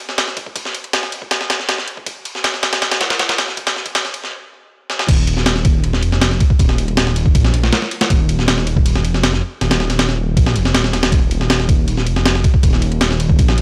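A straight 4/4 breakbeat drives this frenetic, atmospheric drum and bass and jungle fragment at 159 BPM, its sampler-style kit of kick, snare, ride and crash sitting up front with a compressed, gritty punch, a thumpy kick and a high-tuned snare. The opening build-up runs on drums alone until a stop at 4.3 seconds, broken by a drum fill at 4.9 seconds. The drop lands at 5.1 seconds, where a dark, detuned sawtooth bass enters between Eb1 and Bb1, deep and rumbling with a beating, sustained tone and a fast attack. Tube saturation gives that bass an added growl beneath the kit. The whole take feels dry, with a rough cassette grain from the hardware recording.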